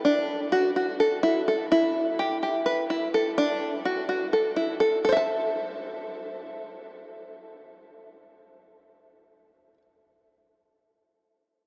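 Set in an uneven 7/8 metre with a straight feel, this short passage is cut from a longer progressive instrumental and moves at 252 BPM counted in eighths. An open-back banjo carries the whole thing alone from 0.0 to 9.8 seconds, fingerpicked and placed up front, its twangy, plunky attack giving the lines a percussive bite. The mood is intricate and brooding, rooted in A dorian, with the harmony shifting from Dadd9 to Asus2 and back to Dadd9 before settling on Am at 5.0 seconds, where a new section begins. The banjo ranges from D4 to A5. A huge, wet ambient reverb with a long 7.4-second tail places the instrument in a vast, echoing space, so each plucked note hangs in the air.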